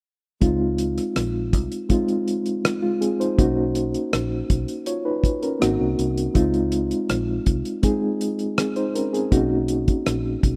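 Lush 1970s-style soul at 81 BPM in Db major, this smooth, mellow excerpt runs from 0.4 to 10.6 seconds with reedy electric piano chords carrying a fast tremolo through built-in speakers, moving between Dbmaj9, Cbmaj9 and Ab7. Underneath, a round, punchy, foam-muted fingered electric bass sits in a dark, amped register, while a dry, cloth-damped drum kit with a tight kick, hi-hat and rim click stays up front with a rolled-off top. The studio ambience gives it the feel of a rough home demo mix, warm and smooth.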